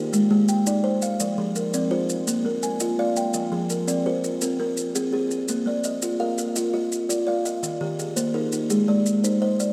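Southern African traditional music in a trance-like, hypnotic mbira-style interlocking cycle at 112 BPM in 12/8, this short cut from a longer piece in F dorian sets an up-front buzzing kalimba's ringing, woody arpeggios against a second kalimba's short, hollow-box fingertip plucks, with close, dry, grainy maracas entering at 0.1 seconds, all bathed in a vast, echoing cathedral reverb while the chords move through Ab, Fm, Bb and Eb.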